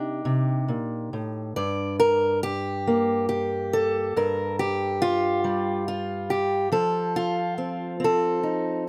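Pastoral and nostalgic, this brief folk excerpt features a lone fingerpicked acoustic archtop guitar, up front and close-miked with light reverb, unfolding rubato in 6/8 through Cmadd9, Gm7 and F7 chords across the 8.9 seconds, its warm, detailed tone touched by finger squeak.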